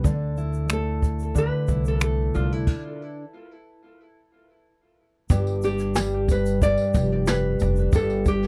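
Acoustic pop with a carefree, sunny lift, this short excerpt pairs a dark, full-bodied fingerpicked steel-string guitar and a woody pizzicato upright bass with an up-front brushed jazz kit of punchy kick, shaker and finger snaps, while a small, boxy nylon-string guitar carries the melody from 0.7 seconds through tape echo, finger squeak audible; a stop falls at 2.7 seconds, and a jingly tambourine sits in the background from 5.3 seconds, all in a dry, close 1970s-style studio sound.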